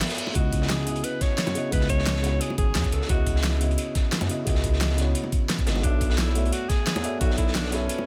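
Liquid drum and bass at 175 BPM with a soulful, dreamy mood, cut from a longer piece: a dark, felt-muted upright piano with audible action noise and delay opens alongside a gritty, saturated breakbeat kit with a rolled-off top and a pop kit with a fat snare and crisp hats. Round, low-tuned bongos join in the background at 0.3 s, before a clear alto saxophone with light vibrato and digital delay takes the melody at 0.4 s over a smooth sawtooth synth bass and a knocking electronic kick, the harmony moving from C#m11 to Bm11 at 5.8 s within a studio reverb.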